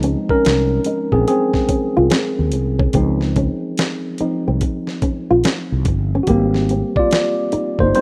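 A worn, slightly out-of-tune tine electric piano leads this short cut from a longer piece, lightly overdriven and heard through built-in speakers as it takes a solo across the whole passage. It sits up front beside a gritty, sampler-style soul drum kit, whose compressed hi-hat, thumpy kick and fat snare give the relaxed neo-soul groove a swung sixteenth-note feel. Underneath, a growly, amped fretless electric bass adds punchy low-end weight until 7.9 seconds. A dark, thumb-plucked flamenco guitar tucks in as a quieter second line in the mid register. The harmony rests on Dbmaj9 before moving to Abmaj9 at 6.3 seconds, keeping the mood soulful and easy. The dry, rough home-demo mix has little reverb, so the players sound close and unvarnished.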